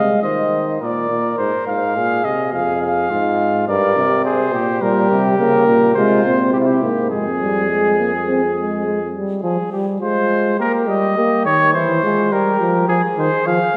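This is a classical, imitative canzona for brass ensemble, cut from a longer piece, moving at 104 BPM in a straight 4/4 with a driving yet contemplative mood. A warm, soft-attacked cornet carries the melody up front, while a mellow, close-miked flugelhorn weaves a second line just beneath it. The bass trombone supplies a clear, vintage-toned foundation with a gentle attack until 9.1 s, and the euphonium, rich with vibrato and placed up front, takes up the accompaniment in earnest from 4.8 s, where the music settles into F minor. The harmony leans on Fm, Gm and diminished colours resolving through C back to Fm, and a new section opens at 9.4 s. A wet concert-hall reverb with a long 2.4-second tail surrounds the ensemble, lending the imitative lines a spacious, reflective glow.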